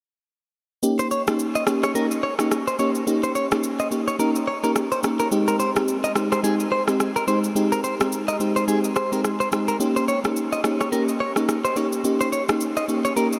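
Afrobeats with a joyful, breezy feel and a swung sixteenth-note lilt, this excerpt from a longer piece sets a lush, detuned FM electric piano with a soft pad layer and chorus against an electronic shaker and rim click, the chords moving from Eb7 to Abmaj7 and back. From 1.0 seconds a bright, clean electric guitar recorded direct plays a picked riff up front, touched with subtle chorus and delay. A huge ambient reverb with a 7.7-second tail soaks the mix in a dreamy haze.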